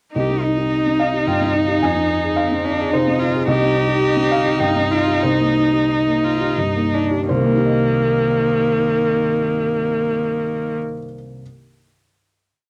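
A longing, melancholic neoclassical piece in 3/4 and C minor opens at 0.2 s with felt-muted upright piano, viola and cello together, tuned slightly low to A4 = 436 Hz. The piano sounds soft, dark and intimate, carrying the melody over inner broken chords. The viola sits up front with bowed, sustained chords and vibrato, while the close, rich cello adds a focused counter-melody that answers at phrase ends. The rubato feel moves between 82 and 111 BPM and slows from 2.7 s, and the theme gives way to a final chord in light reverb on a homely cassette recording, with the piano holding on until 11.4 s.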